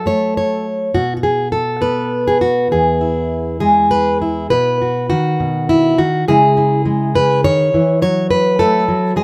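This is a folk piece for solo fingerstyle acoustic guitar, hopeful and peaceful in mood, cut from a longer piece. It moves at a slow 68 BPM in 6/8, counted in dotted quarters, with a rubato feel that lets the time breathe, and the guitar is tuned to A4 = 437 Hz. A single fingerpicked, plugged-in steel-string guitar with a full-bodied jumbo tone sits up front, ranging from E2 to C#5. The first phrase opens on F#m, passes through a chordless stretch, then settles on E. A second passage begins at 4.5 seconds and moves through B and C#m before returning to F#m. Light reverb and a live-in-the-room sound give the guitar a natural presence.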